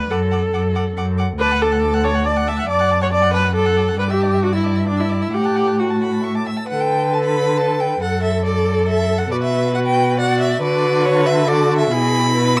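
Moving in a rubato 3/4 at 138 BPM, this quick, spirited and cheerful classical-period string quartet movement in D major, cut from a longer piece, sets a rich, focused first violin melody high above a second violin line shaded by expressive portamento, while a clear viola supplies accompaniment and a vibrato-laden cello with sliding portamento anchors the bass, all framed in a dark production with light reverb.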